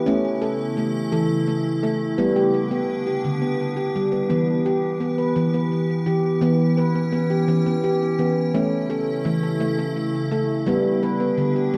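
A ringing nitrided-steel handpan sits up front, its sharp finger strokes spilling bright arpeggios through a delay in this hypnotic, meditative world excerpt in a straight 6/8. Alongside it, an icy glass pad holds crystalline, airy chords with a detuned chorus shimmer and slow, lingering swells of sustain, moving from A to G before turning to E minor at 4.3 s. A dark production and a wet echo-chamber reverb wrap both parts in a small, intimate room ambience.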